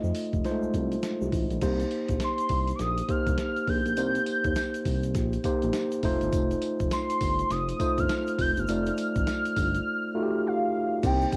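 R&B in a new jack swing style, this short excerpt from a longer piece carries a confident, slick mood with a swung groove in four. A mellow tine electric piano, clean and direct with a cassette tape coloring, lays down chords from the start alongside a smooth sawtooth-and-square synth bass with vibrato and sustained notes, while a grainy egg shaker sits quietly in the background. The boom bap sampler-style drum kit comes in at 0.1 seconds, gritty and pitched down, with a thumpy kick, a medium-tuned snare, hi-hat, crash cymbal and tambourine, all compressed and tape-tinged up front. At 2.2 seconds a velvety synth lead enters high above, built from detuned unison sawtooth and triangle tones with chorus, vibrato and portamento. The harmony moves from F7 to Cm7 and back to F7, and the dry sound of a home cassette recording gives the whole track an intimate, lo-fi character.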